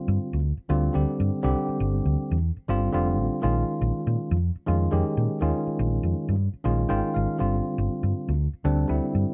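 Funky and driving, this short jazz excerpt in a straight 4/4 pairs a bright, bell-like tine electric piano comping up front with a round, punchy hollow-body short-scale electric bass played with the fingers, moving from G5 to Bbm7 and back, with a brief electric piano fill at 6.7 seconds in a dry, dark mix.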